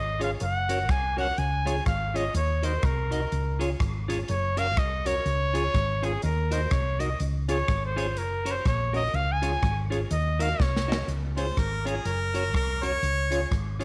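Light studio reverb surrounds this joyful, bouncy ska excerpt with a swinging feel, where a breathy, whispered trumpet with scooped notes solos up front for the first 11.1 seconds over a dark, round hollow-body bass and an airy, polished big-band drum kit with punchy kick, snare, hi-hat and rim click. In the background, a clean picked electric guitar with subtle chorus and slapback echo accompanies, while a fat, lightly overdriven tonewheel organ with key click and slow rotary speaker adds stabs over a cycle of Gb, Db and Ebm chords. After a drum fill, a clear, close-miked harmonica with light vibrato and slapback echo takes the melody at 11.4 seconds.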